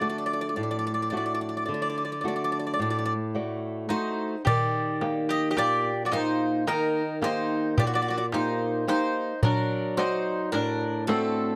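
Reflective and melancholic, this short cut of Greek folk in 9/8 at 108 BPM features an up-front bouzouki melody, metallic with octave-doubled strings, over dark fingerpicked flamenco guitar with audible finger squeak, as a woody mandolin second line joins at 3.9 s and a crisp metal-shell darbuka enters at 4.5 s when the harmony shifts from D to Eb before returning to D at 9.4 s, all captured in a dry, close 1970s-style small-room sound.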